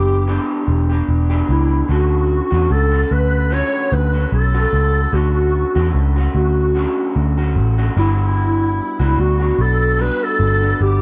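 A dark, distant clarinet carries a dreamy, laid-back melody through ensemble chorus and tape echo, over a slightly broken-up, lo-fi electric guitar bathed in lush chorus and vibrato and a round, foam-muted picked bass sitting up front, all in a dry, close 1970s-style bedroom pop recording that drifts from Em7 to Dmaj7 and on to Gmaj7 at 8.0 seconds.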